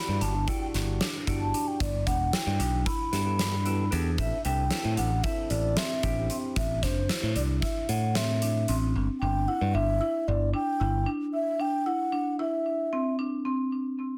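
A mellow, hollow baroque flute carries the melody over a percussive tonewheel organ with light overdrive and key click, while a woody marimba spins delayed arpeggios, opening this tense, driving progressive instrumental in 9/8 at 227 BPM in A dorian. A bright, growly picked electric bass sits up front, and a big rock drum kit with a fat snare and punchy kick pushes the groove until 8.8 seconds, after the organ has already dropped out at 6.6 seconds. The dense, heavily limited mix carries light reverb through chords moving from Em7/G to Gadd9, Am and Cadd9 in this short cut from a longer piece.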